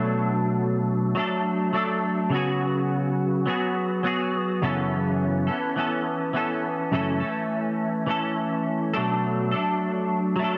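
A clean, picked semi-hollow electric guitar sits up front from the first moment, its compressed, hollow-body tone colored by ensemble chorus and vibrato in this hazy, wistful indie pop fragment with a light sixteenth-note swing. The guitar moves through Bm7, C#7sus4 and F#m7, and a new section begins at 6.9 seconds before the harmony returns to Bm7 at 8.9 seconds. A moderate spring reverb and dark production lend the short excerpt a dim, warm glow.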